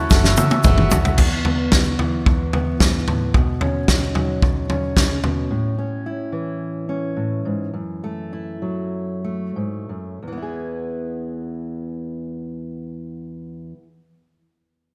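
Indie folk with an uplifting, anthemic feel opens in a brief burst where a clear upright piano, bell-like glockenspiel, felt-muted upright piano, shimmering twelve-string acoustic guitar, mellow tine electric piano arpeggios, woody pizzicato upright bass and grainy egg shaker gather under a drum fill from a natural country kit. The dark, up-front fingerpicked steel-string acoustic guitar then enters at 1.2 seconds and carries on alone from 5.4 seconds as the tempo slows, all in light small-room reverb.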